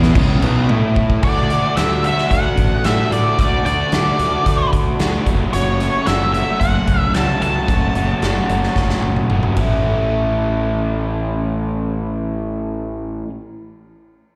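A double-tracked, overdriven garage guitar riff opens this driving, swaggering classic rock excerpt alongside a growly fuzz bass and a big, natural-sounding drum kit with a punchy kick. A dark octave-fuzz lead guitar carries the melody from 1.2 to 9.3 seconds, dressed in wah, slapback echo and analog delay, over chords moving from A to D to F#m. The drums drop out at 9.7 seconds, and the whole performance comes across as a live gig heard through a venue's PA, with recital-hall reverb.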